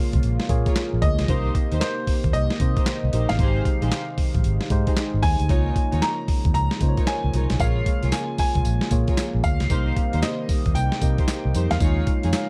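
Flirty and bouncy, this new jack swing R&B cut moves at 114 BPM in 4/4 with a 63% swing on the sixteenths. A gritty, compressed, tape-warm sampler-style drum kit sits up front with a thumpy kick, medium-tuned snare, hi-hat, handclaps and tambourine, entering at 0.1 s together with a round, foam-muted fingered electric bass carrying a vintage, amped tone. A clear, intimate grand piano plays the melody between C5 and Bb5, its action noise audible, over a clean, direct tine electric piano accompaniment and a very quiet, thick sawtooth unison pad holding soft-attack chords with chorus and a long release. From 0.7 s a dark studio string section adds bowed, expressive stabs with vibrato and a smooth top. The harmony cycles through Bbm7, Cm7, Abmaj7 and Db69 before landing on Eb9sus4 near 11.8 s. The production is dry, dark and warm, and the passage is cut from a longer piece.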